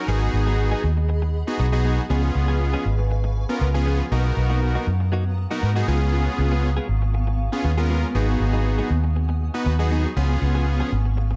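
Pop in a confident, bittersweet mood, built on a round, punchy muted electric bass up front, a fat detuned sawtooth polysynth carrying the accompaniment, a clean, scooped direct-recorded guitar riff with subtle chorus set back in the mix, and a cloudy, evolving granular pad entering at 0.9 seconds with sustained chords, all within a dark production and light digital ambience as G#m7, C#7 and Bmaj7 cycle through this cut from a longer piece.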